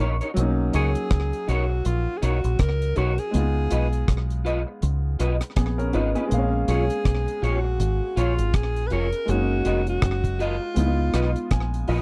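A dry, close recording in a 1970s studio style, with little reverb, frames this sweet, tender lovers rock reggae, cut from a longer piece. A deep dub fingered bass, dark, round and punchy with a foam-muted tone, sits up front beside a tight acoustic reggae kit of kick, hi-hat and rim click, its top rolled off and touched with slapback echo, the groove swung on sixteenths. An electric guitar through a small old amp adds slightly broken-up, lo-fi picked stabs thickened by ensemble chorus. A boxy baby grand piano with slapback echo supplies accompaniment and closes with a fill from 11.1 seconds. From 0.8 seconds a clear alto saxophone carries the melody in a jazz style, close-miked, with vibrato, a soft attack and tape echo, over chords moving through Bmaj9, C#9, A#m7 and F#6 before returning to C#9.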